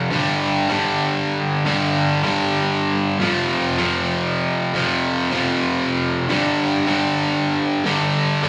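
Heard through a club's PA with a moderate room reverb, this short live rock excerpt has an aggressive, heavy edge in a straight four-beat feel. A lone cranked stack electric guitar, bright and overdriven, sits up front and double-tracked with a slapback echo, picking low power chords from G5 to F5 and back to G5 at 6.3 seconds across its 8.5-second span.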